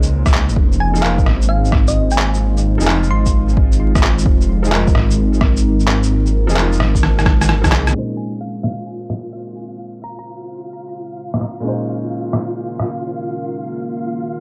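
Future garage in Bb minor at 130 BPM with a swung 16th feel, this wistful, melancholic excerpt rests on a woody upright piano and a moody, mellow ambient pad, both carrying 12-bit sampler grit and sidechain pumping over Bbm11 and Fm7 chords. A rumbling, detuned saw bass and a punchy, layered electronic kick drive the opening and drop away by 7.9 seconds, while overdriven, muffled shaker, rim click and handclaps sit up front, and a round, tine-like synth pluck with tape echo appears in two brief phrases. From 8.0 seconds, filter sweeps move over the drums and pad, a flickering, grainy texture joins at 8.8 seconds, and the mix stays dry and gritty, dusted with vinyl crackle.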